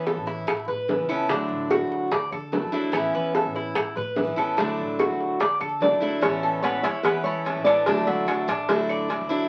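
This short cut from a longer Cuban son and guajira piece opens at once with a picked steel-string acoustic guitar up front and a bright, metallic tres playing arpeggios on its doubled strings, over a pizzicato upright bass with a thumpy, gut-string tone. Tight, high-tuned bongos played with soft hands and cowbell join almost immediately, and woody claves sit close and dry in the background from 0.5 seconds. The harmony moves gently between Aadd9 and Dadd9 in a straight four, giving the music a warm, sunny feel. At 5.8 seconds a fingerpicked nylon-string guitar takes the melody with a classical touch and audible finger squeak, while a very quiet, close-miked trumpet adds a clear second line with light vibrato. The whole recording carries the crackle of a very old 78 rpm record, set in a moderate club reverb.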